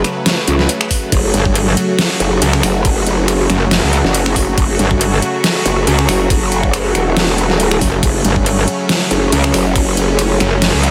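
This heavy wobble dubstep excerpt opens with a growling, detuned bass, an overdriven electronic drum kit and a lush, bright supersaw pad all sounding together, holding an F#m chord in F# phrygian. The pace is 139 BPM in 4/4 with a half-time feel and a light swing on the sixteenths, and the mood is aggressive and heavy. The kit sits up front with a deep snare, metallic hi-hats, finger snaps and crash cymbal, and a knocking electronic kick joins at 0.9 seconds. At 1.3 seconds a metallic FM wobble bass arrives, distorted and compressed, joining the saturated, formant-filtered growl in the low end. The sawtooth pad swells in slowly behind them with a phaser and sidechain pumping, while a lush hall reverb soaks the whole mix in a dreamy digital ambience.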